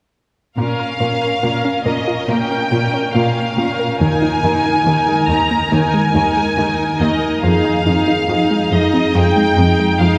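Cinematic music at 70 BPM in 4/4 with a straight feel, set in Bb dorian and tuned to A4 = 444 Hz, this excerpt carries a futuristic, relentless mood. A lush, up-front violin section carries the melody with smooth vibrato, while a rich viola section fills in the accompaniment and a cello section holds down the bass, all three bowed and even, with a distant quality. Alongside the strings, a unison pluck plays arpeggios with a punchy, fast attack and a bright, warbling, detuned sawtooth character, its decaying notes shaped by a filter sweep. All parts sound together from 0.6 seconds, with the harmony moving from Bbm to Ebsus4 at 4.0 seconds and to Fm7 at 7.4 seconds. The whole passage sits in a cavernous cathedral reverb with a 5.9-second decay, giving it the spacious sound of a church or concert hall, and it is cut from a longer piece.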